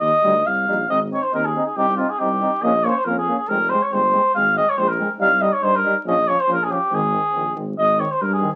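Through the crackle of a very old 78 rpm record and a moderate studio reverb, this short cut from a longer Balkan brass band tune in Ab major runs exuberant and wild at 139 BPM in 2/4 with a light sixteenth-note swing, as a veiled, cup-muted cornet sings the melody up front with vibrato over a mellow tuba bass with light vibrato, a soft-attacked euphonium and a distant, roomy trombone sitting in the background, all four playing in a classical style over chords that move through Eb, Ab, Cm, Bbm and Fm.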